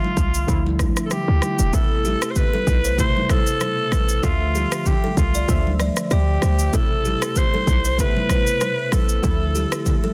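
A dense, heavily limited modern master with little reverb frames this mellow, smooth afrobeats excerpt in A minor, moving at 96 BPM in 4/4 with a light sixteenth-note swing. Up front, a growling alto saxophone carries the melody in a breathy, raspy pop-style solo with vibrato and a touch of digital delay, while analog keys with a round, detuned sawtooth tone, chorus, ring modulation and a filter sweep accompany it over chords alternating between Dmadd9 and Amadd9. A short, punchy 808-style bass with a sine body and noise layer sits underneath from 0.2 seconds, alongside an electronic afro-pop drum kit whose deep, tape-tinged kick, rim click and shaker come forward, with soft clipping on the snare. In the background, hard-handed, damped congas add vintage acoustic color, and a woody, buzzing kalimba joins at 1.7 seconds with an airy riff carried by digital delay. A synth keys fill arrives at 9.9 seconds just before the cut.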